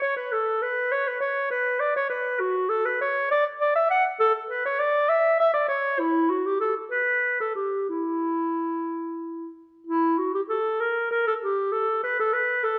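A warm, soft-attacked solo clarinet carries this flowing, dance-like baroque-style classical fantasia in a rubato 6/8 at about 60-68 BPM in dotted quarters, tuned to A4 = 441 Hz and ranging from E4 to F#5, sitting up front yet roomy within a wet recital-hall reverb of 1.3 s across a 12.8-second cut from a longer piece.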